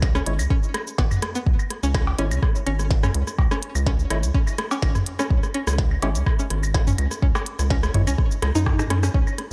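A swung 125 BPM 4/4 groove in C# minor drives this cool, clinical minimal techno excerpt, built on an up-front deep kick, a clicky kit of tiny snare, hi-hats, rim clicks and shaker, and an overdriven analog drum machine booming with claves, cowbell, rim click and toms through tape echo, with a drum fill at 8.4 seconds. Underneath, a rubbery, hollow square bass pumps with sidechain compression, while a twangy, string-like resonator pluck riff enters at 0.2 seconds with chorus, echo and its own pumping. A mellow, percussive organ stab sits in the background from 0.3 to 8.0 seconds, all set in a light reverb.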